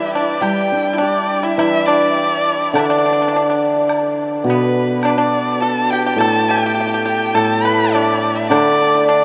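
A bright, focused erhu carries the melody up front in this graceful, festive excerpt of Chinese traditional chamber music. Its single bowed voice sings with vibrato and portamento and sits close to the listener. The piece moves at 104 BPM in 2/4, though the feel stays rubato. A shimmering, ringing hammered dulcimer also sits forward in the accompaniment, while a dry, percussive pipa, plucked with fingerpicks, adds a warm second line beneath the melody. A very quiet, dark woodblock joins at 0.4 s and sounds as if set in a live room. The whole ensemble is bathed in a huge, wet reverb that suggests a vast, echoing space, and the music moves into a new section at 1.6 s.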